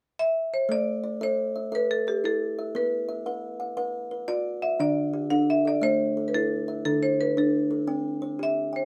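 Light reverb places two up-front, woody instruments in a warm, rippling short cut from a longer piece of southern African traditional music, built on an mbira-style interlocking cycle in a straight 12/8. A bright, percussive marimba with medium hard mallets on rosewood bars carries the melody from 0.2 seconds. A dark, hollow-boxed kalimba joins at 0.7 seconds with smooth, ringing thumb-plucked arpeggios, moving through chords such as Am, D and C.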